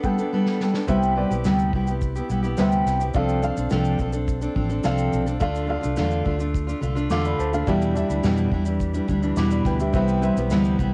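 Easy-going and sunny, this short acoustic pop passage in C major moves at a relaxed 106 BPM in straight 4/4, with a full-bodied, up-front fingerpicked dreadnought guitar on fresh strings and a soft, felt-muted upright piano with short sustain drifting through Gadd9, Cmaj7, F6, Dm and Em7 chords. An unplugged drum kit played with bundle sticks, with punchy kick, medium-tuned snare and shaker, opens with a brief fill from 0.3 to 0.9 s and carries a touch of 12-bit sampler grit. At 0.9 s a dark, round, foam-muted electric bass joins, while cassette tape colouring on the guitar, piano and drums and a small room's reverb give the piece an intimate home-recorded feel.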